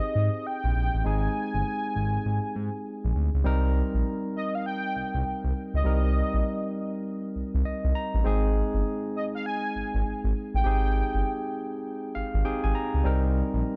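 R&B in a new jack swing style, flirty and bouncy with a swung sixteenth-note feel, cut from a longer piece. A velvety, detuned synth lead with chorus, delay and vibrato carries the melody until 11.7 seconds. Alongside it, a bright, barky tine electric piano adds fills at 7.4 and 11.9 seconds, while a smooth, saturated synth bass sits up front, all over Abmaj7 and Cm7 chords in a dark, warm digital ambience.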